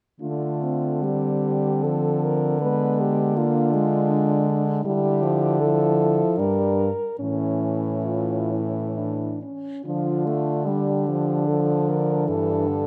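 In a rubato 3/4 drifting between 64 and 82 BPM, this elegiac, solemn classical excerpt in D minor sets four French horns in a lyrical quartet from 0.2 to 12.9 seconds: a warm, smooth-topped melody with light vibrato, a mellow second line, a present accompanying horn, and a clear, up-front bass, all heard through close, detailed microphones in a moderate recital hall reverb, moving from D minor through a diminished chord, G minor and A major before settling on an open G fifth.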